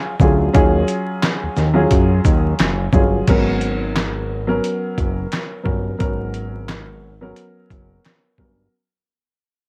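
A dark, woody upright piano opens this moody boom-bap hip-hop excerpt at 88 BPM, its slightly detuned, mellow chords filtered and run through cassette tape as they move from D#m11 to G#m11 at 3.3 seconds. From 0.2 seconds a fat, detuned sawtooth bass with a filter sweep and a gritty, compressed sampler-style kit join up front, the kit bringing a thumpy kick, medium-tuned snare, handclaps, hi-hat, shaker and crash with a swung 16th feel and its own cassette grit. The dry home-cassette sound carries vinyl crackle throughout, and the whole piece fades out from 3.3 seconds to the end.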